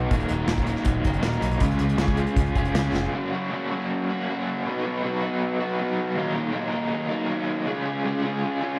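A straight 4/4 pulse at 159 BPM drives this cool, bittersweet indie rock fragment in Eb minor, cut from a longer piece and heard as a live gig through the venue's PA with light club reverb. An acoustic drum kit, played with bundle sticks, sets the beat on hi-hat, tight kick and a medium-tuned snare, while a growling picked electric bass, bright and overdriven, digs into the low end. The drums end with a fill at 2.9 seconds, and both bass and drums drop out by 3.1 seconds. From there the crunchy, double-tracked electric guitar carries on alone, its bright picked riff sitting up front with a tremolo shimmer. The chords move from Ebm through Db, Gb and B before circling back to Ebm and Db.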